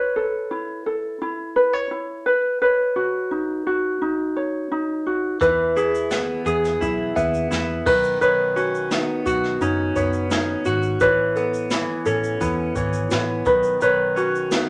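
A reverberant studio sound frames this sunny, heartfelt acoustic pop excerpt at 86 BPM, where a mellow, thumb-plucked ukulele sits up front alone over Aadd9 and Badd9 chords until 5.4 s, when a bright, twangy, direct-recorded clean electric guitar picks arpeggios, a round, foam-muted vintage electric bass holds the low end, and a small-room jazz kit played with brushes joins with punchy kick, shaker, snare and dark cymbals.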